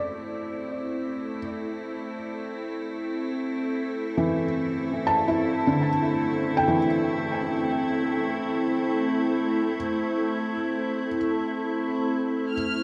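Floating in free time, this reflective, melancholic ambient piece is cut from a longer work and rests on a D9sus4 chord. An evolving wavetable pad carries sustained chords throughout, fading in over the first 12.5 seconds with a morphing, detuned triangle tone, slow attack and long release, bright and up front with chorus and its own reverb. Alongside it, a felt-muted upright piano plays soft, intimate arpeggios with short sustain and audible action noise, its mellow sound trailed by a diffuse ambient delay. At 12.5 seconds the piano stops and a rich chamber violin section enters on a single high F6, bowed smooth and even with vibrato. The whole is bathed in a huge, wet ambient reverb, set against a small room and the grain of cassette tape.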